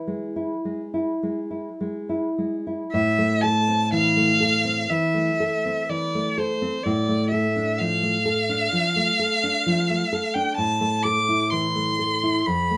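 This is a romantic duo for violin and classical guitar, cut from a longer piece, with a yearning, melancholic mood and a loose, rubato feel in four. The nylon-string guitar plays accompaniment from the start, its thumb-plucked tone dark and full-bodied, and it holds the opening alone over an E chord. At 2.9 seconds the bowed violin enters with the melody, a single player whose rich sound carries expressive vibrato and portamento, yet with a slightly distant quality. Beneath it the harmony moves from A minor to D minor over an A bass at 6.8 seconds before settling back on A minor. Both instruments sit up front in a studio with a moderate sense of room.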